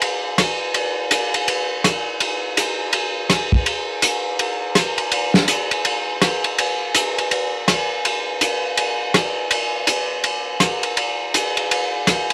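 A dry, dark acoustic drum kit opens the recording and carries it alone for its full 12.3 seconds, with hi-hat, ride cymbal, tight kick, medium-tuned snare and rim clicks sitting up front. This smoky, bluesy jazz fragment, cut from a longer piece, swings its eighth notes at a brisk 164 BPM in 4/4. The cymbals are dusky, the kit's top end is rolled off, and light reverb and the soft grain of a home cassette recording give it a smooth, intimate sound.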